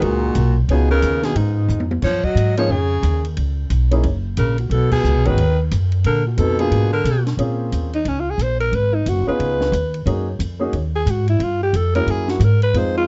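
Smoky and cool, this short cut from a longer small-group swing and bop number moves at 179 BPM in a swung 4/4, settling into Bb minor at 7.4 seconds. A growling alto saxophone with a raspy subtone and scooped notes carries the melody through plate reverb, joined until 7.2 seconds by a bright, punchy baritone saxophone with vibrato. The alto then takes a solo over a warm baby grand piano, a woody, thumpy pizzicato upright bass set up front, and a dry cocktail drum kit with dark cymbals, a high-tuned snare and a tight kick, with a brief drum fill and a band accent along the way in a dark, lightly reverberant production.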